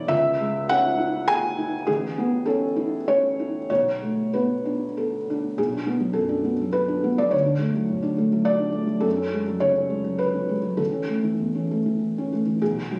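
A felt-muted upright piano plays alone throughout this wistful, melancholic neoclassical minimalist piece, its dark, mellow tone sitting up front and intimate, with thick felt, short sustain and audible action noise. In B dorian and a rubato 3/4 at roughly 93-106 BPM, it moves through chords such as C#m, Aadd9 and Bm7 before shifting at 5.6 seconds into a new passage of Bm, D, F#madd9 and A, spanning from E1 up to G#5. Captured on a phone in a stone room with moderate reverb, this short excerpt is cut from a longer piece.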